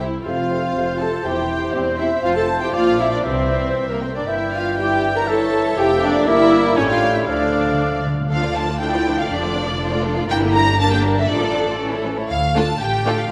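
In a brisk, straight 2/4 at 120 BPM, this quick classical-period movement for symphony orchestra begins in F major and turns to D minor from 4.3 s, taking on a dramatic, urgent mood as it is cut from a longer piece. A rich, expressive violin section carries the melody with vibrato and a soft attack, while a second, lush violin section, a hollow, airy flute group, a distant oboe and a dark, very quiet clarinet add second lines. Violas and a mellow bassoon supply accompaniment, a mellow French horn section holds sustained chords in the background, and cellos with a focused, smooth top join double basses on the bass. The winds and horns fall away around 8.0 s, while round, soft-malleted timpani play a fill from 7.3 to 8.3 s that closes the opening section. The strings, joined by the timpani until 10.0 s, carry on through the D minor close at about 13.3 s, all set in the wet reverb of a scoring stage.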